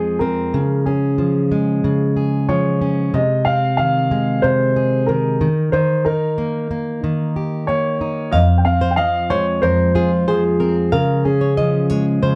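A dark upright piano carries the melody up front, its mellow, woody tone and long sustain giving this short pop excerpt a vintage character. Beneath it, a fingerpicked plugged-in steel-string acoustic guitar supplies full-bodied jumbo accompaniment throughout, sitting just as close to the listener. At 92 BPM in a straight 4/4, the mood stays easy-going and sunny despite the minor-leaning harmony that moves through Fm, Db, Ab/C and Eb before returning to Fm and Db. At 8.3 seconds a flamenco guitar joins with fingerpicked arpeggios, its fresh strings and audible finger squeak adding a crisp sparkle in the upper register. Light reverb surrounds a dark, warm production, and the piano drops out at 11.9 seconds while the two guitars carry on to the cut at 12.4 seconds.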